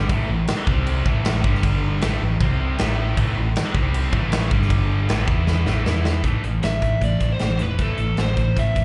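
A straight 4/4 pulse at 156 BPM drives this heavy hard rock passage in A minor, cut from a longer piece and heard as a live club gig through the venue's PA, with small-room reverb and a dulled top end. A big acoustic rock kit sits up front, with a punchy kick, a medium-tuned snare, hi-hat and bright crash cymbals, and a drum fill arrives at 5.5 seconds. Beneath it, a dark, round fingered electric bass holds the low end. Also up front, a double-tracked, scooped high-gain guitar plays a picked, distorted riff that moves among A5, C5, G5 and E5 before the harmony settles onto A minor. At 6.6 seconds a biting lead guitar enters with an overdriven, picked melody, its tone colored by slapback and tape echo.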